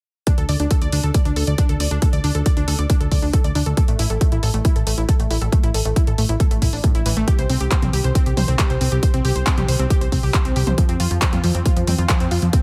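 This soaring, emotional slice of uplifting trance, cut from a longer piece, opens at 0.3 seconds with a layered electronic kick, an overdriven analog drum machine and an analog pluck arpeggio all arriving together at 137 BPM in a straight 4/4. The pluck is round, bright and detuned, a sawtooth tone with a noise layer and a filter sweep that keeps it evolving, treated with chorus, digital delay and sidechain pumping as it spans A2 to D5. A plucky analog bass joins at 0.4 seconds, funky and up front, pairing sawtooth and pulse waves with a moving notch and tube saturation, and it also pumps with sidechain. The drum machine adds dry handclaps, hi-hats and toms, with the hats and toms pumping as well, while the kick sits forward in the mix. The chords move from D5 to A5, C5 and F5 in a close, dry sound with little reverb, and the whole passage runs to 12.6 seconds.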